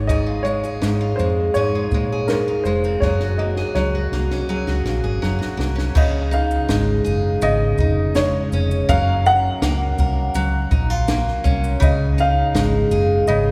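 Sunny and easy-going, this acoustic pop excerpt in Db major moves at 82 BPM in a straight 4/4, with a dark, woody, slightly detuned upright piano carrying the melody over up-front picked steel-string acoustic guitar with audible finger squeak, a round, foam-muted vintage electric bass, and a compact cocktail drum kit of punchy kick, high-tuned snare, shaker and dark crash cymbal that plays a fill from 3.0 to 6.0 seconds, all bathed in a long cathedral reverb as the chords drift from Db/Ab through Gbadd9 and Gbmaj7.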